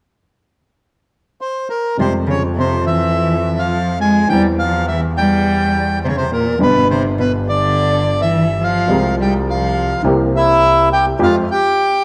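A reedy, dark bandoneon sings a melancholic, sultry tango melody up front from 1.4 seconds, joined at 2.0 seconds by a warm bowed cello with vibrato and portamento on the second line, an intimate baby grand piano whose action noise is audible, and an earthy, distant bowed double bass, all moving with a rubato feel inside an echo chamber reverb in this fragment cut from a longer piece.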